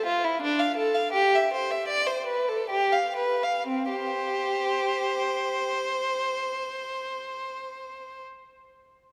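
A solo violin sits close and up front inside a wet church reverb whose long tail lingers after the playing, giving this short excerpt, cut from a longer piece, a radiant, serene glow. It is a baroque-style suite movement for unaccompanied violin in C major and 3/4, played with rubato at a tempo that moves between 60 and 92 BPM and slows over the opening 3.7 seconds. The single bowed violin has a warm tone with vibrato, a soft attack and portamento, ranging from C4 to F5 in an expressive reading. The harmony outlines Dm, then C/G and G7, arriving on C5 at 3.7 seconds as the second section begins. The violin stops at 8.2 seconds, leaving the resonant space to carry the sound through to the close.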